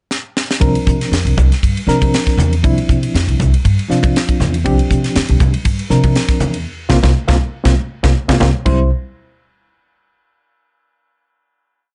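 A quick fill on a tight, dry funk drum kit with a high-tuned snare opens this short, bright electric jazz fusion piece, before a reedy, clean electric piano with fast tremolo plays pushed C9sus4 chords over a woody, dark pizzicato upright bass riff at 119 BPM with a light sixteenth-note swing in C mixolydian. Ringing congas join in the background at 1.4 s as the kit settles into a polished ride groove, and the whole band hits an accent before landing on a final C chord at 8.7 s. The sound is close and upfront, with little room around the instruments.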